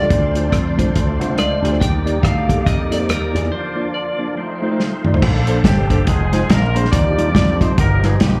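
A jubilant, hopeful slice of swung uptempo gospel from a live club gig opens with a clean lap steel melody played with fingerpicks and slide over a worn, slightly out-of-tune electric piano, a reedy tonewheel organ with key click and fast rotary speaker, faint dark strings, a punchy envelope-filtered slap bass and a muffled, lo-fi soul drum kit that plays a fill at 4.8 seconds before a tight vintage horn section takes up the melody at 5.7 seconds.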